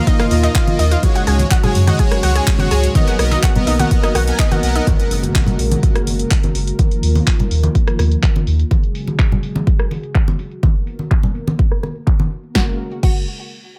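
A straight 4/4 groove at 125 BPM drives this uplifting, hopeful progressive house excerpt in F# major: an up-front, overdriven electronic kick and a punchy, low-passed deep house kit of crash, handclaps, hi-hat, rim click and snare sit beside small-room acoustic congas and a round, dark analog bass, with the congas and bass pumping under the sidechain. A mellow, detuned analog pad sustains chords moving through D#sus2, C#sus4 and Bmaj7, while a smooth, full-bodied supersaw plays stabs and a detuned sawtooth pluck arpeggiates with delay through the opening drop until 4.8 seconds. A very quiet impact lands at 4.9 seconds as filter sweeps move across the drums and pad, and the pluck and bass return on F#add9 at 12.6 seconds, the mix set in a digital ambience.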